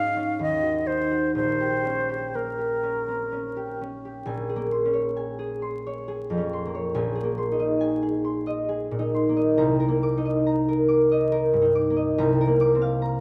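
An airy, close-miked silver flute with vibrato sings a wistful, mysterious melody over fingerpicked, ringing concert harp in this slow, rubato classical impressionist duo in 3/4 and Bb dorian at 60-72 BPM, before the flute falls silent at 3.8 seconds and the mellow harp carries on alone through rich ninth chords until 13.2 seconds, all set in a reverberant recital hall with vinyl crackle, as if lifted from a longer piece.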